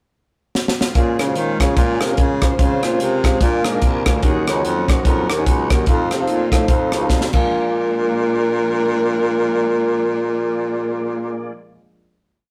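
A rough rehearsal-room recording with moderate reverb captures this fervent, soulful uptempo gospel piece in swung 4/4, where a crisp fusion drum kit with dark cymbals and a punchy kick drives a two-beat praise groove up front from 0.6 seconds until it drops out at 7.4 seconds. A clear baritone saxophone carries a walking and running gospel bass with vibrato, while a warm baby grand piano plays rhythmic, close-voiced chords. Behind them, a jazz-style saxophone section states motif-based song phrases, and a tonewheel organ with key click and fast rotary speaker joins a lush, bowed studio string section in sustained pads through a breakdown and a final hit ending near 10.8 seconds.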